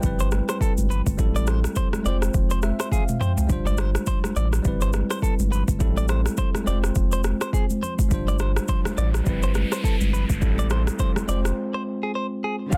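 A swung 16th-note groove at 104 BPM in 4/4 drives this romantic, joyful afrobeats passage in C major, cut from a longer piece. An electronic afro-pop drum kit sits up front with a deep, overdriven kick, rim click, shaker and toms, and a short drum fill. Very quiet, bright congas with a thin skin add soft hand percussion, and a round, sine-like sub bass anchors the low end. A bell-like tine electric piano carries the Cmaj7/G, Am7, Fm and G7sus4 progression and breaks into a brief fill. A clean, compressed, picked electric guitar riff, recorded direct and colored by tape echo, threads through nearly the whole passage. An electronic noise sweep enters at 8.8 s, a break arrives at 11.6 s, and at 12.7 s a velvety, chorused synth lead with vibrato touches a single high note over a dark, lush bowed string section, all within light reverb and a dense, heavily limited modern master.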